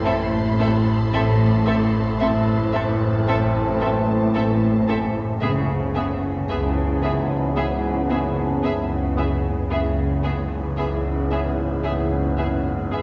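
Muted double basses sit up front in this slow, uneasy cinematic passage at 56 BPM in 4/4, their bowed con sordino low notes anchoring an ominous hush, with cellos adding their own bass line further back. Above them, close, muted violins carry a veiled melody on a high E, while a second violin group adds a soft upper texture until 4.8 s, and a smooth-topped studio violin section traces a quiet second line in the background. Very quiet, distant violas fill the middle, and mellow French horns and dark, lightly vibrato trombones hold roomy sustained chords far behind. An ethereal, airy synth pad with tremolo shimmers faintly, while a resonant drone with moving overtones, chorus and phaser hums underneath. The harmony shifts from A minor to C-sharp minor seven at 5.4 s, where a very quiet, dry timpani note briefly sounds. The whole lush ensemble is heard from deep in a scoring-stage space with a wet reverb, as if cut from a longer piece.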